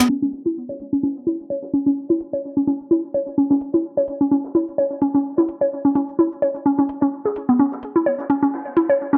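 A moderate plate reverb and small room ambience frame this low-pass filtered minimal techno excerpt, which moves at 128 BPM in 4/4 with a 55% swing on the sixteenths, in C# minor. Up front, a mallet-like FM synth pluck carries the riff from B3 to C#5, its woody, round and nasal tone given a fast attack, short decay and a noise layer, with chorus and delay adding shimmer. Close behind it, an electronic shaker and hi-hat part enters at 0.2 s, layered and overdriven, with metallic hats placed forward in the mix. Underneath sits a very quiet, dry acoustic soul drum kit of hi-hat, shaker and a fat snare, mid-forward with a rolled-off top. The mood is quirky and hypnotic, and the piece runs as a single section to 9.2 s.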